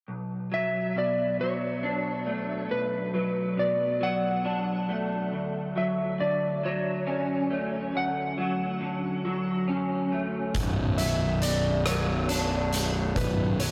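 A slightly broken-up, compressed electric guitar through a small old amp picks chorus- and delay-tinged arpeggios from 0.1 s in this cathartic, melancholic post-rock piece in B minor, set at a slow 46 BPM in 6/8, joined almost at once by a dark slide guitar melody with analog delay, while a gritty, oversized low-tuned drum kit with a boomy kick, pumping room sound, hi-hat and rim clicks enters at 10.5 s and a growly, fuzz-drenched picked bass on B0 follows just after, over chords moving from Bm7 to Dmaj7 and back, the whole dreamy mix soaked in huge ambient reverb.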